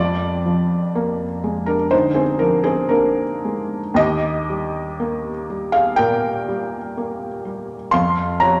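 A felt-muted upright piano plays alone, soft, mellow and close, its audible action noise sitting up front in a tender, serene romantic nocturne that drifts with rubato around 61 BPM in 4/4. Spanning from Eb2 to C6, the short cut from a longer piece moves from Bb7/F to Eb at 4.0 seconds and lands on F5 at 7.9 seconds. A wet large-studio reverb and tube saturation surround the intimate, natural tone.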